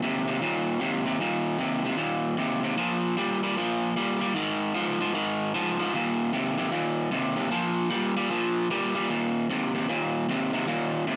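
A bright, crunchy overdriven electric guitar plays alone and up front, picked over Eb5, Bb5 and Ab5 power chords in a soulful, rollicking swung blues in Eb major at 152 BPM, set in a moderate club reverb, with a short new section arriving at 9.1 seconds before this slice of a longer piece cuts off at 11.2 seconds.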